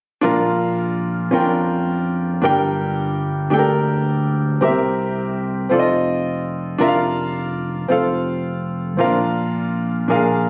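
A clear concert grand piano sits up front, its smooth, vintage tone carrying deep bass and short sustain as it plays accompaniment from 0.2 to 10.5 seconds. Beneath it, a fingered electric bass adds a round, punchy, amped low end through the same span. This slow gospel cut, in a straight 6/8, moves through chords from Bb through Gm, C7 and F7 back home to Bb, and it feels jubilant and uplifting, with light reverb and the intimate air of a phone recording made in the room.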